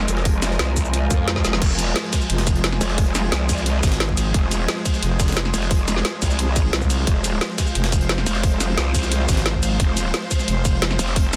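A distorted, wobbling growl bass sits up front in this aggressive, futuristic stretch of dark technical drum and bass, its formant-filtered, chorused tone bright and pumping against the kick. At 2.3 seconds a thick FM bass joins it, adding a second growling low layer. The drums stack a tight electronic kick, an up-front kit with a woody snare, metallic hats, crash, ride and shaker, and a very quiet, overdriven breakbeat sampler kit with a gritty, medium-tuned snare, with a drum fill at 1.4 seconds. Behind them, a tense, detuned swarming drone holds sustained chords over an F minor add9 harmony while a mellow, blurred granular cloud pad adds texture, both carrying their own built-in reverb and pumping with the kick. A very quiet electronic swell appears briefly at 1.1 seconds. The mix carries a light digital ambience and a dense, heavily limited modern master, and the passage is cut from a longer piece.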